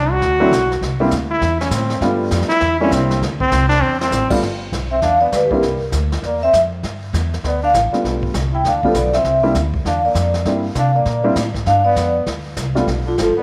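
Swinging and warm, this brisk small-group swing and bop excerpt at 199 BPM in G mixolydian opens with a brilliant, punchy trombone solo with scooped notes over woody pizzicato upright bass and a brushed kit with dark cymbals and a boomy kick, a drum fill at 3.8 seconds coming before a mellow, ringing vibraphone melody from 4.9 seconds while a dark, intimate baby grand piano with audible action noise comps in two stretches, all set in an echo chamber reverb.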